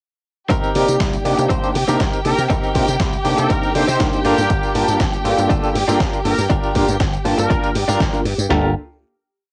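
Filtered disco house at 120 BPM in a straight 4/4, with a groovy, nostalgic mood and a home-recorded cassette character in a small room. From 0.5 seconds the whole piece plays as a drop over Cm7 moving to Gm7. A punchy, layered house kit drives a four-on-the-floor kick with snare and floor tom, while a gritty, compressed sampler-style soul kit adds closed and open hats, a fat snare and tambourine, its hats and percussion pumping with the sidechain. A bright, envelope-filtered slap bass jumps octaves, a clean, direct-recorded electric guitar picks a compressed funk chord rhythm with tremolo, and a worn, slightly out-of-tune tine electric piano plays a lightly overdriven, phased chord riff with rootless voicings. Dark, lush bowed strings hold chords and a high note with expressive vibrato, and from 2.3 seconds a bright trumpet section in classical style adds short answering phrases with light vibrato and tape echo. 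A band accent lands at 8.0 seconds before a final chord rings out from 8.5 seconds.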